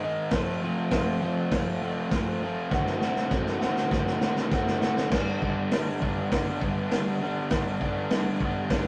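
Garage rock with a swaggering, raw edge, this fragment opens on a crunchy, picked, double-tracked guitar riff, joined at 0.3 s by an up-front vintage drum kit with a punchy kick, medium-tuned snare and dark cymbals, whose fill from 2.7 s carries the piece into a new section at 5.1 s, heard through a rough, tube-saturated rehearsal-room recording with a moderate booth ambience.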